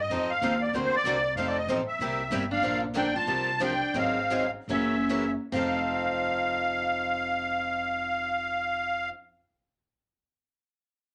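A reedy, shimmering musette accordion carries the melody up front from the opening moment over a woody, thumpy pizzicato upright bass, and two picked acoustic guitars, one a warm dreadnought and the other a boxy, bright swing-style instrument, supply the chords in this lively, playful passage of jazz manouche in F mixolydian, swung at 133-190 BPM. From 2.5 seconds a third steel-string guitar with fresh strings and audible finger squeak adds a second line in the background while the tempo slows between 2.6 and 5.5 seconds, moving through chords such as Bbmaj7, Ab7 and Gb7 before returning to F7. A moderate club reverb gives the short cut from a longer piece an intimate, roomy sound.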